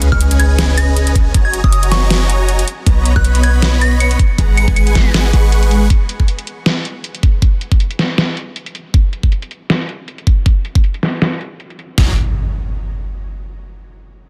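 An impact and sub drop open this playful, bright future bass cut at 158 BPM in F# major, where a huge detuned supersaw riff pumps with dub echo over a deep, boomy 808-style bass and a soft, chorused FM bell melody through lush chords like Bmaj9 and G#m9, then everything but the dubstep drums (knocking kick, deep snare and metallic hats behind a sweeping filter) drops out by 5.9 seconds until the riff and bass return at 12.0 seconds on F#69, with a final impact following just after.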